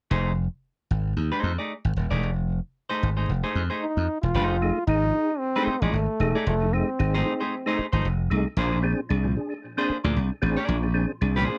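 A semi-hollow electric guitar and a slap bass open together at 0.1 s, the guitar clean, picked and scooped with a hollow-body tone, the bass bright, punchy and up front. This is playful, gritty funk at 113 BPM in 4/4, with a 16th-note swing and a tuning reference of A4 = 438 Hz, and the harmony sits on F7#9 before moving to Bb9 at 8.6 s. A clear trombone takes the melody from 3.8 s to 7.8 s, smooth on top with a light vibrato in a pop style. From 4.4 s a percussive tonewheel organ adds mellow, round, dark stabs through chorus vibrato, a fast rotary speaker and tape echo. The sound is dry and close, like a 1970s studio, with light reverb, and the passage is cut from a longer piece.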